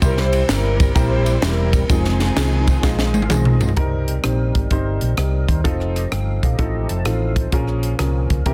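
Soulful and fervent, this uptempo gospel excerpt in F minor swings at 128 BPM, with a dark, lush bowed string section carrying the melody until 3.3 seconds over a woody upright piano, a fat tonewheel organ with slow rotary speaker, overdrive and key click in the background, and a round, amped hollow-body electric bass up front. A crisp fusion drum kit with a high-tuned snare and punchy kick drives the groove alongside close, dry tambourine, egg shaker and group handclaps that drop out at 3.7 seconds, while a drum fill and organ fill from 2.8 seconds lead into the second section. The dense, heavily limited modern master moves through C, Fm7, Cm7, F7 and Bbm7, with a further organ fill at 6.6 seconds.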